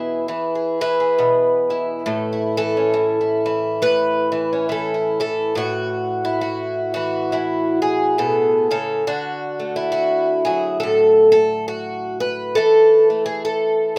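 Folk for solo fingerstyle acoustic guitar, this pastoral, nostalgic excerpt moves at an unhurried 68 BPM in 4/4 with a gentle swing on the eighth notes, settled in A major. A picked twelve-string acoustic guitar carries everything alone, sitting up front with a dark, woody tone from old strings and a shimmering, octave-doubled sparkle, softened by light reverb. The harmony rests on E before moving to A at 2.1 seconds, shifting to D at 9.1 seconds and coming home on A5/E at 12.6 seconds.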